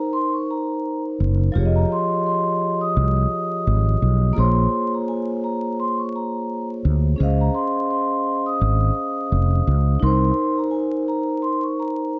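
A round, dark fretless electric bass sits up front in this gritty, brooding boom-bap hip-hop excerpt, entering at 1.2 seconds and dropping out at 10.3 seconds. Above it, a soft-mallet vibraphone carries the melody high in its register, its tone metallic and ringing with the motor off, placed mid-forward and filtered at both ends of the spectrum. A second vibraphone, also played with soft mallets, supplies mellow accompaniment across a broader span; it has a boxy small-room character and a cassette-tape coloring. The groove sits in 4/4 with a lightly swung sixteenth-note feel, moving through a moody progression of Cm7, Fm7, Bbm9 and Dbmaj7 before returning to Cm7. Light reverb and a layer of vinyl crackle give the whole mix a worn, dusty texture.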